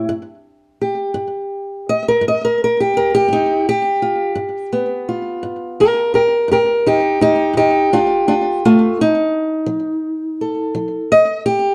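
Gritty and soulful, this short fragment of acoustic country blues in a slow 12/8 features a lone fingerpicked old ladder-braced acoustic guitar, up front and woody, with the boxy, dark character of old strings and a slapback echo. It rests on a G7 chord before moving to F7 at 8.6 seconds, set in light reverb within a dusky production.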